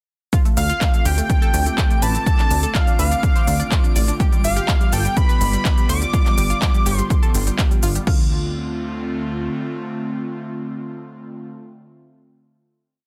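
An overdriven, punchy electronic kick drives this dreamy, expansive progressive house piece four-on-the-floor, joined by crisp programmed hats, claps, cabasa and crash cymbals, while a thick, detuned unison lead carries a motif-based melody doubled by a soft, mellow supersaw in the background. Beneath them, a funky, plucky analog bass with tube saturation plays off-beat, an analog pluck repeats a sixteenth-note riff over a pedal note, and a breathy, warbling pad holds sustained chords moving from Dm7 to G7, with very quiet congas entering at 4.2 seconds and a twinkling granular shimmer hanging high above. The drums drop away at 8.2 seconds, and after the bass fades shortly afterward, the pad and pluck hold a final Dm7 in a dense, heavily limited mix with little reverb.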